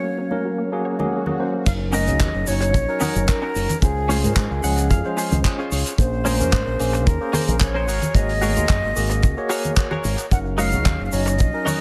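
Nu-disco at 111 BPM with a feel-good, sunny mood, this echo-heavy excerpt opens on a breathy, close-miked flute melody over tine electric piano with sidechain pumping, a very quiet lush pad and detuned sawtooth pluck arpeggios. Background congas soon join, followed by an electronic swell at 0.8 seconds. The track then drops at 1.7 seconds into an up-front, tight kick, a damped 70s kit with dark cymbals, handclaps and shaker, and an envelope-filtered fingered bass. A twangy, chorused clean guitar riff joins at 1.9 seconds, with a fill at 4.4 seconds, over chords moving from Ab9sus4 through Gb6, Dbmaj7 and Bbm9.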